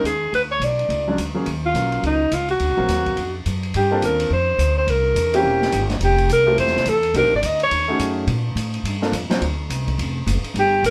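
Smoky and cool, this short cut of small-group swing and bop moves at a brisk 211 BPM in 4/4 with a swung eighth-note feel, settling into G minor from 3.7 seconds through rich altered chords such as Bb7#9b13, Gm11 and D7#9. A breathy, mellow alto saxophone carries the melody up front with vibrato and scooped notes, though its tone sits distant and roomy, dropping out at 8.1 seconds before a brief return, while a clear, present grand piano comps until 9.4 seconds. Pizzicato upright bass with a woody, steel-strung tone and an open, dark-cymbaled drum kit with a boomy kick and medium-tuned snare play through to the end, all heard as a band live in one room with light reverb.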